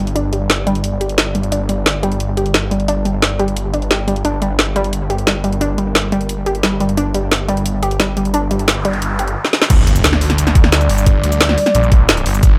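Driving at 176 BPM in a straight 4/4, this dark technical drum and bass excerpt in G minor feels mechanical and dark from the first beat. An up-front, overdriven electronic kit with a woody snare, bright hats, cabasa and crash cymbal runs from 0.1 s, sitting beside a snarling, growling sawtooth bass built from detuned unison layers with a moving notch, saturated and compressed low in the register. Behind them, a deep, moody pad holds sustained chords with a slow attack, long release, wave-folding and ring modulation, treated with chorus and its own reverb and pumping against the sidechain. A warbling, lo-fi pluck with a dusty noise layer and mellow chorus spins arpeggios through tape echo until 9.3 s. A noise sweep enters in the background from 8.7 s, a drum fill lands at 9.4 s, and at 9.7 s the drop arrives with an impact and a knocking, tape-warm kick, re-recorded in a small room and treated with studio reverb, that stays up front through to the close.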